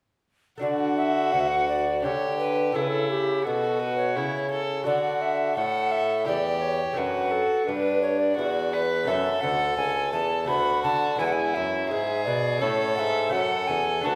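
Classical baroque-style sonata movement in a flowing, dance-like triple metre, this excerpt sets an airy, tongued tenor recorder melody with audible chiff over a rich, reedy gut-string violin second line played up front, a delicate fingerpicked lute with double strings, and a clear bassoon bass with light vibrato, all four sounding together from 0.6 to 14.2 seconds in a reverberant recital hall.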